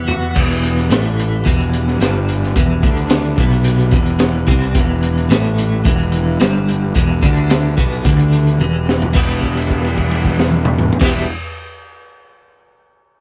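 A crunchy, gritty breakbeat kit drives this dark, trippy psychedelic rock passage in a straight 4/4, its punchy kick, high-tuned snare and dusky cymbals sitting up front beside a fuzz-soaked overdriven bass. A clean, compressed twelve-string electric guitar plays a double-tracked riff with tremolo, while a fat, lightly overdriven tonewheel organ holds sustained chords through a fast rotary speaker in the background, all in a dry, close sound. A drum fill at 8.6 seconds leads into a new section where a held note rings from 9.2 seconds to 11 seconds, just before the cut from a longer piece.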